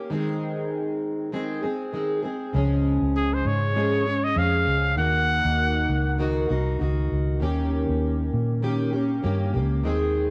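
Lightly swung sixteenths in 4/4 carry this sunny, heartfelt acoustic pop fragment, where a full-bodied, double-tracked fingerpicked jumbo steel-string guitar opens over Ab/Eb, Db, Ebm and Eb7 chords, a dark, round, foam-muted vintage electric bass enters at 2.5 s, and a clear, smooth-topped pop trumpet with vibrato sings a short solo melody from 3.2 to 6.2 s, all three up front in a moderate spring reverb.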